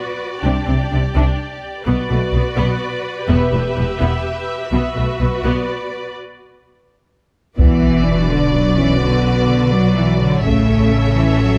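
In a straight 6/8 at 84 BPM, this heroic, relentless cinematic orchestral excerpt in B phrygian builds as lush bowed violins, an expressive viola section with portamento, vibrato-rich cellos and a woody, up-front double bass section move through Csus2, Bm and Em, reach a break at 6.2 seconds, then hit an impact at 7.6 seconds in B minor, where a high violin melody, mellow French horn chords, heavy-stick taiko drums in the background and a huge, dark sub drop join under light reverb.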